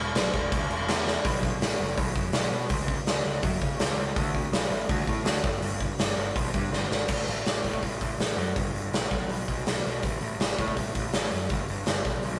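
Punk rock with a rebellious, rowdy energy, cut from a longer piece, driven by a picked electric bass with bright, punchy fuzz and overdrive and a big acoustic rock kit that sits up front with a punchy kick, medium-tuned snare, crash and hi-hat in a bright stone room. The kit enters at 0.2 seconds just after the bass, and drum fills at 1.1 and around 6.7 seconds mark the turns between three short sections. The sound is raw and dry, like a rough rehearsal-room take.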